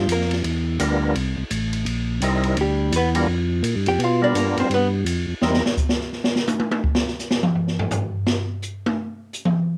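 A home cassette recording with a moderate studio reverb captures this short, swinging and greasy soul jazz organ trio cut at 169 BPM, with a tonewheel organ's full, lightly overdriven bass line turning slowly through a rotary speaker beneath a fat, percussive second organ that carries the melody with key click and chorus vibrato over G7#9 and C7#9 chords. A dark, clean, compressed hollow-body archtop guitar takes its solo in brief picked bursts at 0.0 and 2.6 seconds. At 5.4 seconds the harmony drops away and the acoustic drum kit, with its boomy kick, medium-tuned snare and dark cymbals, launches into a drum solo, carrying on alone once both organs fall silent at 5.6 seconds.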